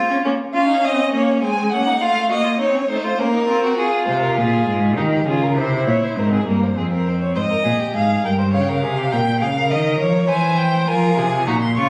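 Serious and driving, this short cut from a longer baroque-style fugue for string quartet moves at 101 BPM in 3/4 with a straight feel. A single bowed violin carries the melody from 0.5 seconds, its tone smooth and even with vibrato, sounding somewhat distant yet placed up front in the mix. A second violin takes the second line with a rich, even sound, dropping out around 3.8 seconds and returning at 7.4 seconds. The viola provides accompaniment with a soft attack, portamento and expressive vibrato, sitting back in the distance, while the cello enters on the bass at 4.1 seconds with a full, smooth-topped tone that stands forward. The harmony moves through minor-key territory from Bbm through Ab, Eb and C before the second section brings Db and a diminished chord and settles on Fm. The players sit in a reverberant recital hall with added club reverb, and the sound carries the character of a phone recording made in the room, overlaid with vinyl crackle.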